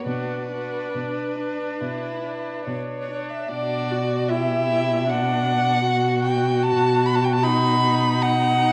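A focused, up-front violin with vibrato carries a second line alongside a distant, smooth violin melody, a clear, even viola accompaniment and a dark, expressive cello bass with portamento, in a melancholic and solemn slow romantic string quartet movement in B minor at 68-79 BPM with rubato, tuned to A4 = 444 Hz, its rich bowed tones set in moderate scoring-stage reverb and colored by worn cassette tape with warbly pitch drift, moving from B minor to B major at 6.6 seconds in this fragment cut from a longer piece.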